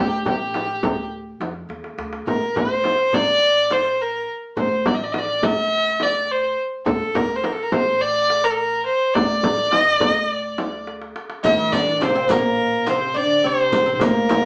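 A straight 4/4 pulse at 105 BPM anchors this hypnotic, soulful Arabic maqam ensemble piece in D maqam bayati, cut from a longer performance. The frame drum sits close and dry, with the darbuka's clay shell and natural skin further back in the room, and drum fills land around 1.7 and 10.9 seconds. Beneath them, a pizzicato upright bass on gut strings gives a thumpy, dark low end from the background. Out front, a single bowed violin carries the melody with a nasal, earthy tone and light vibrato, its sound slightly distant despite its prominence. At 11.4 seconds the texture thickens: a fretless, plectrum-plucked oud with woody double strings joins as a second line, while a riq with dark, band-limited, vintage jingles adds a layer from the background, and a moment later, at 11.5 seconds, a dark, bowed cello played sul tasto enters as another second line. The band plays live in one room, wrapped in a wet studio reverb, with a small-speaker character to the overall sound.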